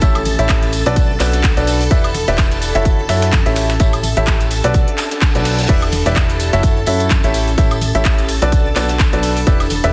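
Dense, heavily limited and lightly reverberant, this soulful, bittersweet piano house excerpt at 127 BPM with a swung 16th feel is led by a bright, woody upright piano riff with delay, pumping over a punchy, funky, dark analog bass pluck and a punchy electronic kick up front, while a crisp-hatted house kit with handclaps, cabasa, woodblock and crash, a gritty, pitched-up breakbeat kit kept very quiet, and background tambourine and congas fill the groove; shimmering vintage string-machine violins and a warbling, nostalgic lo-fi pad sustain behind, and a faint reverse cymbal rises from 4.9 to 5.7 s as the chords cycle through A7, Bm7, Em7 and F#m7.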